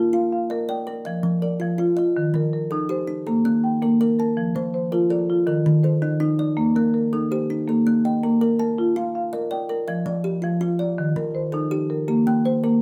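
Warm and rippling, this excerpt from a longer piece is a southern African traditional mbira-style interlocking cycle in 12/8, moving at 109 BPM counted in dotted quarters with a straight feel and tuned slightly low to A4 = 435 Hz. A marimba played with medium mallets and a kalimba both spin arpeggios from the first moment to the last at 12.8 seconds, each spanning roughly the same register from Eb3 up into the fifth octave. The marimba sits louder, its rosewood bars giving a woody, vintage, band-limited tone. The quieter kalimba brings short, dry thumbnail plucks from a solid board, close-miked and full. Both instruments sit up front in a moderate studio reverb, cycling through Bb, Eb, Gm and F colours before a second section at 9.9 seconds opens on F13sus4 and returns through Eb to Gmadd11/Bb.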